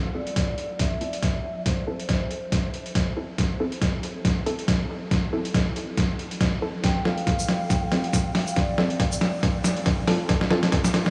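A barely audible, dark detuned saw bass rumbles beneath a dark, brooding deep dubstep excerpt at 139 BPM in A minor, where a distant, hollow ney and muted, chorused dub chord stabs drift through dub echo and a huge, dreamy reverb over gritty, tape-warm, up-front sampler-style trip hop drums and a thumpy kick, building with a drum fill and filter sweeps on the stabs and ney as the chords move from Am to F at 6.8 seconds.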